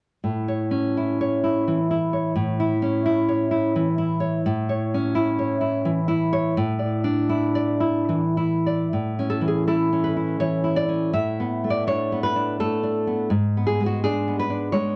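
Heard through worn, warbling cassette tape with drifting pitch and a moderate studio reverb, this sunny, romantic excerpt for solo classical guitar moves in a rubato 3/4 at 69-88 BPM in A major, its dark, full-bodied nylon-string guitar fingerpicked up front from 0.2 s, resting on A with a brief Asus4 before a second passage from 8.9 s moves through Bm7/A to G#dim as the clip ends at 15.0 s.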